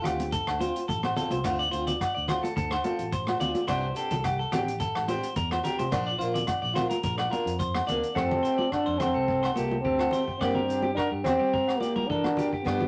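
Bathed in a wet studio reverb, this sunny cut from a longer highlife guitar band piece moves in a straight 4/4. A picked parlour acoustic guitar with fresh strings and a bright, twangy clean electric guitar playing arpeggios ride over a round, punchy fingered bass, a dry, mid-forward soul drum kit with tight kick, hi-hat and rim click, high-tuned vintage congas and ringing agogo bells in the background. At 8.2 seconds a smooth-topped French horn steps up front with the melody, while a breathy trumpet with light vibrato and scooped notes adds a mellow jazz-style second line behind it.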